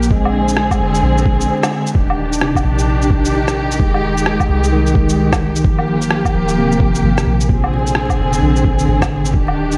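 The excerpt opens with dark, lush bowed strings, a soft round 808-style bass and a muffled, pitched-down patter of electronic shaker, woodblock and rim click, with a thumpy compressed kick arriving at 0.1 seconds. This is melancholic, wistful future garage at 130 BPM in 4/4, swung on the sixteenths, with all of its pitched parts breathing under sidechain pumping and the whole mix sitting in light reverb, digital ambience and vinyl crackle. An overdriven tine electric piano plays the accompaniment through a combo amp, its bright, barky, gritty tone shaped by fast tremolo, a low-pass filter and tape echo. After a brief break from 1.5 to 2.0 seconds, punctuated by a band accent at 1.6 seconds, the section returns and a filter sweep runs on the electric piano while the chords move through Ebmaj7, Fm9 and Gm7 before landing back on Bb9. The woody, vibrato-laden string ensemble stays up front though distant in character, and the deep sine bass, with its fast attack, decays beneath it.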